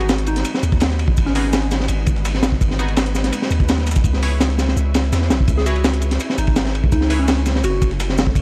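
A crunchy, punchy breakbeat kit of kick, dark ride and high-tuned snare drives this frenetic, raw drum and bass fragment alongside a deep, long 808-style bass and a nasal, band-passed sawtooth chord stab with chorus and dub echo in the background, joined at 0.1 seconds by a compressed, pitched-up sampler-style kit of high-passed hi-hat, shaker and snare, while a round, warbling FM synth lead with vibrato and dub echo plays its gentle melody at the start and again from 5.6 seconds, all over a dry, gritty hardware sound with transformer saturation and vinyl crackle.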